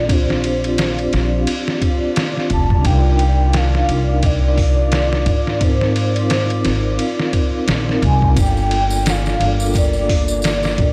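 A loping 87 BPM trip hop groove in 4/4 with a 58% swing on the sixteenths rides on a muffled, pitched-down sampler kit of thumpy kick, snare, hi-hat and ride, under a woody pizzicato upright bass up front, while a soft-mallet vibraphone with tremolo and a deep, detuned analog pad hold chords from Bb69 through Cm11 and Ab69 to Gm9 in G minor. Above them a pure, breathy sine lead carries the melody through chorus and tape echo, and a very quiet, flickering, grainy texture hovers high above. Ringing, close tambourine and congas join at 8.4 seconds in this smoky, brooding excerpt, its dry, gritty sound set in a digital ambience.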